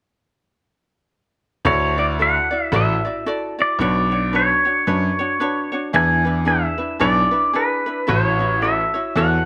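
Hawaiian music in a dreamy, languid swing, with a warm electric pedal steel guitar up front singing the melody through slide and volume swells, a light fingerpicked acoustic ukulele playing the accompaniment, and a bright, vintage grand piano holding down the bass with long sustain over Dadd9, Bmadd9, E7 and A6 chords, all in light reverb in this short fragment of a longer piece.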